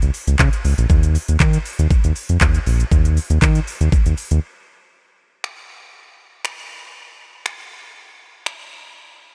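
A round, dark analog bass, built from detuned sawtooth, sine and triangle tones with a fast attack and sidechain pumping, drives this bittersweet dance-pop excerpt at 119 BPM through a drop until it falls away at 4.4 s for a brief break. An electronic pop drum kit sits up front with a knocking kick, crisp hats, handclaps, finger snaps and shaker, carrying on into the next section until 8.6 s. The mix is dry, with little reverb.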